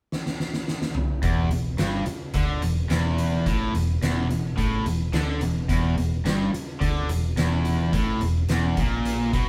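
Recorded as a band playing together in one room, this cut from a longer piece carries a moderate studio reverb that gives it a live, gritty presence. It is driving blues rock with a southern rock edge, played by a power trio in a straight four. An oversized, low-tuned acoustic drum kit of toms, snare, kick and hi-hat opens alone with a fill from 0.1 seconds, its bright stone-room ambience pumping around a fat snare and punchy kick placed up front. At 1.2 seconds the cranked stack guitar and the bass arrive together on an E5 power chord. The double-tracked, picked guitar riff is bright and overdriven, sitting boldly forward in its low register. Underneath, the vintage electric bass is dark, round and foam-muted, its amped tone giving the low end a punchy, rounded thump.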